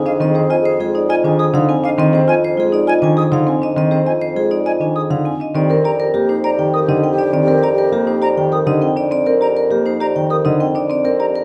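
In a moderate recital hall reverb, this hypnotic, meditative minimalist pattern piece in 3/4, cut from a longer work, sets a ringing, close-miked vibraphone melody over woody rosewood marimba arpeggios, airy concert flute arpeggios with vibrato, a dark, vintage baby grand piano accompaniment, and a mellow, distant bassoon on F2, while a bright wooden-headed alto flute adds a soft-attacked background second line only from 0.0 to 1.7 and 5.6 to 8.9 seconds as the harmony moves from Fm7 to Eb6/F.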